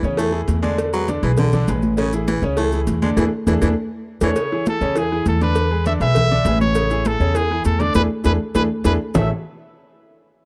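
Salsa at a brisk 201 BPM in A major, joyful and sunny, cut from a longer piece with a dry, close 1970s-style studio sound: a raspy, gritty baritone saxophone carries the opening line until 4.3 seconds over a bright, brilliant grand piano, a woody, thumpy upright bass up front, thick-skinned high-tuned congas, and grainy maracas and round low-tuned cowbell and bongos sitting in the background. At 4.2 seconds a clear, punchy trumpet with light vibrato takes over the melody, forceful and up front, as the harmony rocks between Amaj7 and E7. The whole band hits accents together at the close of each phrase.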